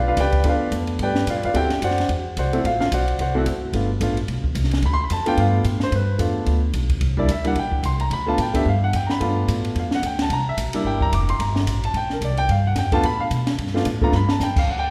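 Playful and sophisticated, this fragment of small-group swing and bop moves at a brisk 219 BPM in G mixolydian, with an intimate, vintage upright piano sitting up front with audible action noise, a woody pizzicato upright bass on steel strings, and a dark, smooth cocktail drum kit with a high-tuned snare and punchy kick, set in the long reverb of a church or concert hall before a drum fill at 14.1 seconds.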